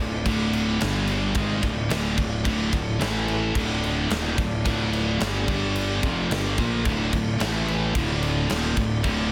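The big rock drum kit sits up front in this dark, aggressive heavy metal excerpt, with a punchy kick, a medium-tuned snare and bright crash cymbals in a stone-room sound from 0.3 s to 9.2 s. Two picked electric guitars carry the riff in D minor at 109 BPM in a straight 4/4: one scooped and high-gain with biting distortion, the other sludgy and overdriven, set further back. Beneath them, a fuzz-laden picked electric bass growls through its overdrive, moving between Dm, G5 and A5 across the roughly nine-second passage. A pipe organ with sparkling flute stops holds sustained chords in the background, its light baroque voicing and chiff adding an eerie glint over the heavier parts. The small room ambience and a dense, heavily limited modern master keep the whole fragment of a longer piece tight and crushing.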